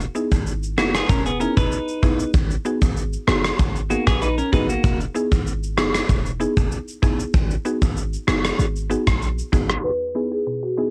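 Dancehall with a hypnotic, sultry mood, cut from a longer piece and carried by a straight 4/4 groove that moves between Emaj7 and G#m7. A gated 80s drum kit sits up front with a punchy kick, rim click and shaker, while a deep, boomy 808-style bass with a sine body and noise layer runs underneath until 9.8 seconds. A woody, round synth pluck with an FM character provides the accompaniment through chorus and sidechain pumping, lasting nearly the whole clip. A clean, twangy electric guitar plays bright, compressed arpeggios between 0.8 and 5.0 seconds. At 9.8 seconds a new section begins under a filter sweep, and a marimba with medium mallets and rosewood bars takes the melody with a vintage, band-limited tone and tape echo. The whole has the muffled sound of a home cassette recording with little reverb.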